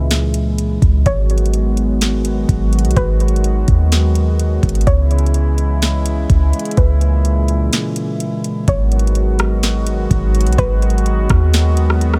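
A deep, boomy 808-style bass sits up front in this atmospheric cloud-rap track, its clean sine tone striking fast and decaying darkly beneath a half-time groove at 126 BPM in G# minor, tuned to A4 = 443 Hz. An electronic R&B drum kit with a knocking kick, sharp snare, metallic hi-hats and rim clicks enters at 0.1 seconds and also sits close to the listener. Behind them, a vintage analog pad holds smooth, warbling sawtooth and wave-folded chords with a soft attack, chorus and sidechain pumping. A gentle pluck carries the quiet melody, its round, dark tone blending triangle, sine and sawtooth with a noise layer, shaped by chorus, a low-pass filter and delay. The harmony moves between C#m7 and G#m7, a break arrives at 7.7 seconds, and a new section begins on G#m7 at 8.7 seconds, giving this dry, ethereal and melancholic passage cut from a longer piece its drifting, wistful air.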